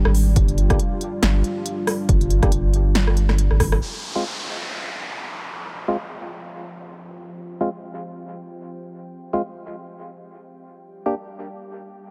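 A thick, saturated sub bass anchors the opening drop of this heavy, brooding deep dubstep excerpt in a swung half-time feel, joined by a punchy electronic kick and a deep house kit of snare, rim click and smooth hi-hats that closes with a drum fill and a band accent at 3.7 seconds, while a hollow, organ-like percussive stab with chorus and dub echo continues after the beat stops at 3.8 seconds, a downlifter sounds, and a moody, detuned analog pad sustains chords through a filter sweep until 12.1 seconds.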